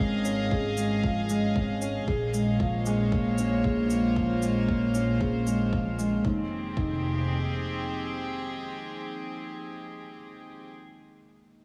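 In a straight 4/4 feel, an overdriven electronic kick drum, deep and layered with the air of a large room, drives the pulse, while a gritty overdriven shaker adds a thin top layer; both drop away by 6.9 seconds. This short, melancholic and intimate piano-and-strings electronica piece is cut from a longer work. A felt-muted upright piano plays a soft, dark, vintage-toned riff through a digital delay, and it is the last sound heard, at 11.6 seconds. Beneath it, a bowed double bass section with a reedy, gut-string tone and light vibrato holds the low end, pumping under sidechain compression and filtered by a sweep during the first 6.2 seconds. A chamber string section sustains pure, floating chords with a soft attack, played sul tasto, moving from Dbmaj7/Ab to Bbm7 and settling on Fm7 as the second section begins. A lush hall reverb wraps the arrangement in a spacious, gentle haze.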